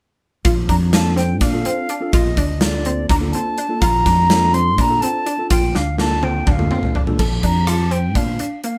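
Intricate and bright, this short progressive instrumental moves in an uneven 7/8 with a straight feel, cut from a longer piece and set in a moderate studio room where the band plays live together. An airy, tongued wooden flute carries the melody over sawtooth analog pluck arpeggios with a detuned chorus shimmer, a worn, slightly out-of-tune electric piano with light overdrive, and a dark, round fretless bass. Up front, a punchy gated 80s drum kit with bright cymbals drives the groove and plays a fill from 5.7 to 7.2 seconds, ending just as the electric piano drops out and a new section begins.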